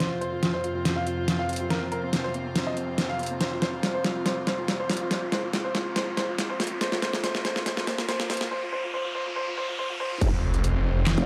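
A baby grand piano with a short, natural sustain carries the melody through a low-pass filter and tape echo, over softly bowed chamber strings that pump against the sidechain and an overdriven dubstep kit of deep snare, metallic hats, handclaps and crash cymbal, all in a lush hall reverb. This heavy, chaotic wobble dubstep cut at 141 BPM in half-time builds with a drum fill, a filter sweep and a background riser and sub drop from 0.7 seconds. At 10.2 seconds the drop hits with a punchy electronic kick and an up-front growling bass that wobbles with chorus and a formant filter, joined a moment later by a snarling distorted saw bass on F1.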